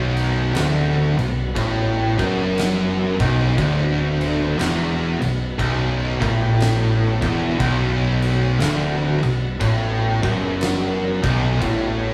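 A slow 60 BPM pulse in 4/4 with swung eighths drives this hypnotic, brooding stoner and doom metal passage in B minor, cut from a longer piece and resting on a single Bm chord. A bright, double-tracked distorted guitar sits up front on the low riff, with two thick fuzz guitars tucked behind it, one very quiet, while a growling overdriven picked bass adds punch beneath them. An oversized low-tuned acoustic kit joins at 0.2 s with a punchy kick, fat snare and dark crash cymbals, gritty and pumping in a stone room, and a very quiet, flute-like tonewheel organ holds soft sustained chords through a rotary speaker with vibrato and key click.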